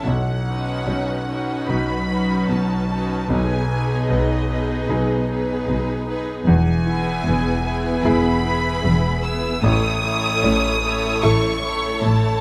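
Hopeful and tender, this cinematic passage moves with a rubato feel as a smooth, lightly vibrato symphonic violin section carries the melody high above a focused, close studio violin section singing a second line, with intense violas adding inner accompaniment. A bright, brilliant concert grand piano with deep bass anchors the harmony, while a ringing, fingerpicked concert harp sits in the background with its arpeggios. Lush bowed cellos, also set back, join expressive double basses at 0.1 seconds to ground the chords from Badd9 through G#m/B and E to A, all framed by the moderate reverb of a scoring stage and close, detailed microphones.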